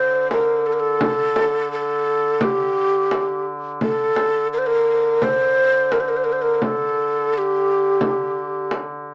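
A straight 4/4 pulse from a small, bright acoustic frame drum, entering at 0.3 seconds, carries this soulful, hypnotic Arabic maqam ensemble fragment, cut from a longer piece. Up front, a breathy, hollow end-blown ney sings the melody between G4 and C5 with vibrato, a crisp attack and a touch of analog delay, falling silent at 8.7 seconds. Beneath it, a warm, distant duduk holds a roomy folk-style drone on D3 through 9.1 seconds, all set in light reverb with a small-speaker character.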